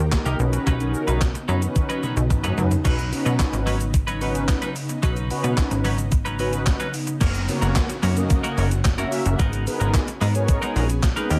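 Driving, energetic dance-pop excerpt at 110 BPM in straight 4/4, cut from a longer piece, where an up-front, overdriven 80s drum machine with a thumpy kick and gated-reverb snare fills from 1.8 to 2.8 seconds beneath a punchy, funky analog bass with sidechain pumping, a bright, twangy twelve-string electric guitar riff bathed in lush chorus, round, brassy synth brass, an ethereal, warbling pad in the background, a grainy, very quiet egg shaker entering at 2.9 seconds and a faint downlifter from 7.3 seconds, all over a Badd9, F# and G#madd9 progression in a dry mix.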